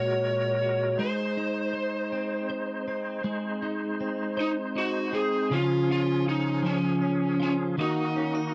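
This fragment of a six-eight pop ballad opens with lead guitar, twelve-string electric guitar and tonewheel organ sounding together from the first moment. The mood is romantic and swaying, at 53 BPM counted in dotted quarters, in D-flat major. The lead guitar, driven through a small cranked amp, carries the melody between Db4 and Db5 in a warm, overdriven, picked tone placed up front. Beneath it the twelve-string electric guitar plays accompaniment in a bright, clean, twangy, compressed voice that also sits close. The organ holds sustained chords with a reedy, lightly overdriven sound, audible key click, chorus vibrato and a fast rotary speaker, set lower in the mix than the guitars. The harmony moves from Gbadd9 over Bb to Ab, arrives on Db at 5.5 seconds and turns to Ebm at 7.8 seconds, heard in a dry, intimate 1970s-style studio sound touched with digital ambience.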